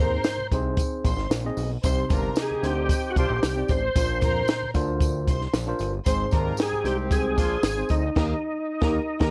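The drums drive a straight, danceable 4/4 at 114 BPM, a compact cocktail kit with a punchy kick, high-tuned snare, hi-hat and dark crash cymbal played dry. This short cut from an uptempo 1960s-style soul piece has a joyful lift, and a close, jingly tambourine joins the kit from 0.2 seconds. Up front, a thick, gritty, overdriven tonewheel organ carries the melody through chorus vibrato and a slow rotary speaker. A lush, bright studio string section bowed with vibrato forms a second line above it, and a mellow, distant horn section adds another tight line from 2.1 to 7.6 seconds. Underneath, a worn, slightly out-of-tune tine electric piano through a combo amp fills in the accompaniment over Ab, Cm, Bbadd9 and back to Ab, while a fat, detuned sawtooth bass anchors the low end. The band lands a shared accent on Eb at 8.2 seconds, all under a light reverb.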